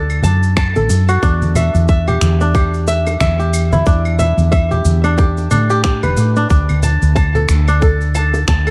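Mystical and earthy, this organic downtempo excerpt moves at 91 BPM in 4/4 with a swung sixteenth-note feel, centred on E minor and tuned slightly sharp at A4 = 441 Hz. An up-front, fingerpicked kora plays ringing, crisp arpeggios through a delay, while a woody fretless electric bass sits equally forward with a dark, round, hollow-body tone and sidechain pumping. Gritty, tape-warm electronic claves, cabasa and finger snaps, re-recorded in a large room, come in at 0.1 seconds, and a tight electronic kick follows at 0.6 seconds. Congas and bongos, played with soft hands, add compressed, saturated texture from the background. The harmony opens on D, settles on Em7 at 1.2 seconds and closes on D5 at 6.5 seconds, all wrapped in digital ambience with a dark, warm production.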